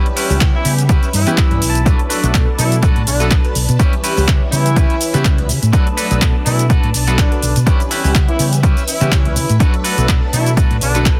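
Funky and nostalgic, this short cut of filtered disco house moves at 124 BPM in B minor, with a swung sixteenth feel and a harmony that rocks between C#m7b5 and Bm7 every couple of seconds. An overdriven, punchy electronic kick sits up front with an analog drum machine supplying handclaps, cabasa and hi-hat, while a dark, round fingered electric bass anchors the low end with sidechain pumping. A detuned sawtooth polysynth comps with a filter pluck and a moving notch, treated with chorus and phaser, and a bright, clean picked electric guitar plays a riff roughened by vintage 12-bit sampler grit, adding a fill between 1.1 and 1.9 seconds. Behind them a swirling phased string machine holds slow-attack sustained chords with ensemble chorus, staying in the background. A tight pop-style horn section carries the melody with light vibrato, octave doubling and delay, all set in digital ambience under a dense, heavily limited modern master.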